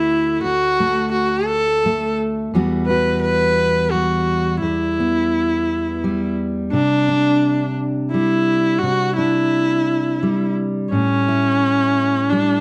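Acoustic folk in waltz time, this short cut from a longer piece feels hopeful and nostalgic. A single bowed viola carries the melody from the start, its rich, smooth tone colored by vibrato and set close and up front with a plate reverb. Beneath it, a fingerpicked steel-string dreadnought guitar supplies full-bodied accompaniment, also up front and sitting slightly lower in the balance. The harmony moves from D to Emadd9 at 2.5 seconds, then to Cadd9 and finally A7 near the close, leaving the phrase open. Light reverb and a dark, warm production give the duo an intimate, even glow across its roughly 12.6 seconds.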